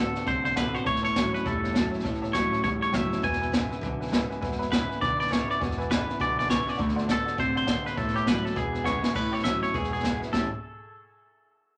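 Rockabilly with a rollicking, rowdy swing at 203 BPM in A major, this short cut from a longer piece is led by a bright, twangy electric guitar melody with spring reverb, set up front over a slightly broken-up riff guitar through a small old amp and a jangly, detuned honky-tonk upright piano. Underneath, a full-bodied picked steel-string acoustic guitar with finger squeak and a woody, thumpy pizzicato upright bass sit very quiet, while a roomy brush drum kit with dark cymbals and a boomy kick drives the D7, A7 and E7 changes. A drum fill at 8.9 seconds leads into a brief new section around 9.2 seconds, all in a light reverb.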